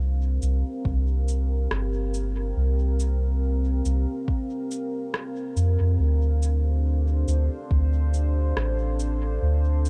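Deep and hazy, this ambient dub excerpt sets a moody, dark pad with chorus and reverb moving from C7sus4 to Dm7 over a round, soft, tube-saturated sub bass held up front, while a gentle electronic kick sits close between 0.9 and 7.9 seconds and electronic cabasa and rim click, entering at 0.4 seconds, carry a dub echo inside a warm digital ambience.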